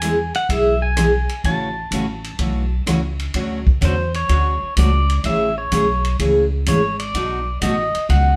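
A live-in-one-room sound with a moderate studio reverb frames this down-home, swinging western swing cut in A major at 126 BPM, with a 69% swing on the eighths. A twangy, clean pedal steel carries the melody with slide and volume swells, stepping into a solo at 3.3 s as the chords move from Dmaj7 to Amaj7 and B7, while a bright, full-bodied jumbo acoustic guitar picks the accompaniment up front. Beneath them, a woody pizzicato upright bass and a vintage kit with dark cymbals, a punchy kick, rim clicks and ride keep the groove.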